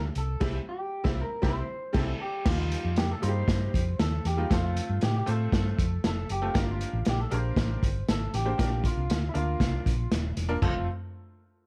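Up front in the mix, a muffled vintage acoustic drum kit with a tight kick, medium-tuned snare, toms and dark-toned china, crash and hi-hat cymbals drives this uplifting 1960s-style soul cut, its lo-fi, rolled-off sound suggesting a small room. Beside it, a round, hollow-body short-scale electric bass, played fingered and amped, sits just as forward and carries a dark, low foundation from the opening moment. A bright upright piano adds woody, brilliant accompaniment with a worn, slightly detuned character and audible action noise, set in a plate reverb that gives it an intimate presence. The melody comes from a twangy, picked electric guitar through a small old amp, slightly broken up and warm in tone, entering at 0.2 seconds. The full band hits accents together from 0.4 to 2.5 seconds before settling into a longer passage that moves through Eb, F, Gm and Bb, all within a dark, warm production with light reverb in this cut from a longer piece.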